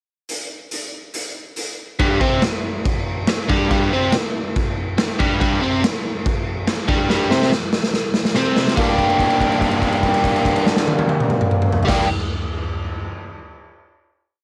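Garage rock with a swaggering, raw attitude at 142 BPM in G minor, opening with a gritty, saturated drum kit stomping out a pickup bar of kick, snare, toms, hi-hat and crash in a bright stone room before a biting, overdriven, double-tracked electric guitar enters at 2.0 seconds with a picked octave riff on a Gsus4. A drum fill leads into a final G minor chord at 8.8 seconds, where the guitar holds a note to close this short home recording, captured on cassette tape, with the up-front kit carrying a rolled-off top.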